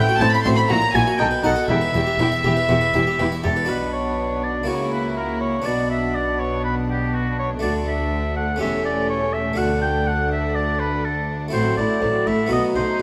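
A clear, up-front solo oboe leads this driving, stormy baroque-style concerto movement at 122 BPM in 4/4, moving from E minor into B minor at 3.7 s as it sings over a rich chamber violin section also carrying the melody in the background and a second violin line beneath. A dark, nasal viola section and a close-miked, round harpsichord fill in the accompaniment, while a warm cello section and a rich double bass section carry the bass line with gut-string, period-style bowing until 12.8 s. A moderate stage reverb gives the ensemble a sense of space in this passage cut from a longer piece.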